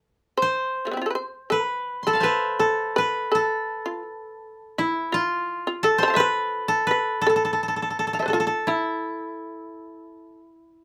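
Set in a free, rubato pulse around 83 BPM in 4/4, this short excerpt of Japanese traditional chamber music unfolds in E miyako bushi with an austere, calm mood. The koto carries the melody from 0.4 s, its fingerpicked tone dry and woody, sitting up front as it moves between E4 and C6. Alongside it for the same span, the shamisen plays a second line from F3 up to C6, plectrum-plucked with a percussive, buzzing attack and a powerful fretless voice, also placed close to the listener. Both plucked strings carry a warm acoustic character, heard in a moderate small room with a brief, short-decaying ambience. The passage reads as a fragment lifted from a longer piece, holding a single section through to 10.8 s.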